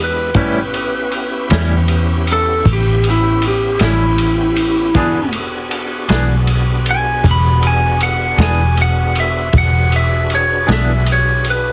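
Heavily compressed, radio-like sound with light reverb frames this gritty, swaggering slow blues excerpt at 52 BPM in 12/8 and E mixolydian, where a slightly broken-up, twangy lead guitar solos throughout over a round, foam-muted fingered bass, a muffled, lo-fi vintage drum kit of tight kick, snare and ride entering at 0.3 seconds, a clean, bright picked guitar with tremolo joining at 0.4 seconds, and a shouting tonewheel organ holding sustained chords through slow rotary speaker, overdrive and chorus vibrato with audible key click, as the harmony moves from A7 to E7.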